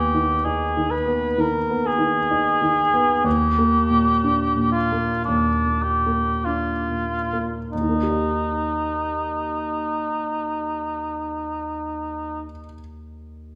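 In a rubato 4/4 that slows over the first 7.7 seconds at 44-66 BPM, this passionate, lyrical classical fragment in Eb major, tuned to A4 = 435 Hz, pairs an intimate grand piano melody, its action noise audible, with a mellow cor anglais second line carrying light vibrato that stops at 12.4 seconds, while the piano continues to 13.6 seconds and moderate scoring-stage reverb surrounds both as the harmony moves from Abm/Eb through Bb/Eb to rest on Eb.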